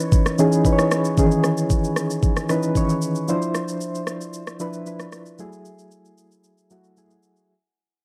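Soft electric-piano-like synth keys sit up front in this late-night, hypnotic amapiano fragment, their round, mellow tone shimmering with chorus and tremolo and carrying a cassette-tape haze. Each note strikes quickly and then decays, spelling out a minor-ninth progression that moves from C#m9 to Dm9 at 3.3 seconds and on to F#m9 at 5.4 seconds. A smooth R&B drum kit, electronic and produced, plays alongside for the full 7.5 seconds, with a knocking kick, rim click and shaker placed close in the mix and sharing the tape coloring. The groove runs at 114 BPM in a straight 4/4, with the instruments tuned to A4 = 441 Hz. Light reverb and a digital ambience frame this home cassette recording, and the whole passage fades out across its length as it is cut from a longer piece.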